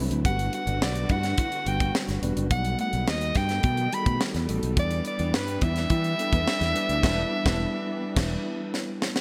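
Polished 1980s jazz-funk pop in E minor at 106 BPM, nocturnal and slick, cut from a longer piece and moving through Gmaj7, B7b13 and Em7. A bright, punchy soprano saxophone with vibrato carries the melody up front over a dry, tight funk drum kit with a high-tuned snare, a direct fingered electric bass, a mellow tine electric piano with subtle chorus, a dark and very quiet clean guitar riff, and lush bowed strings with portamento in the background. Near 7.0 seconds the band hits an accent, the electric piano adds a fill from 7.6 seconds, and the drums close with a fill at 8.7 seconds, with light small-room reverb and a glossy digital production.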